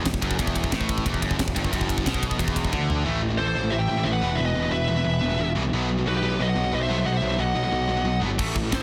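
A straight 4/4 pulse at 180 BPM drives this dark, heavy metal excerpt in E harmonic minor, where two bright, picked distorted rhythm guitars churn out a riff in the background beneath an up-front, growly fuzz bass. A tight acoustic kit with a high-tuned snare and bright cymbals pounds in a big, airy room, ending with a fill before dropping out at 3.0 seconds and returning at 8.4 seconds. From 3.4 seconds, a dark, high-gain lead guitar carries the melody with tape echo over A5, E5 and B chords, shadowed by a second, quieter lead line, all in a dense, heavily limited modern master with little reverb.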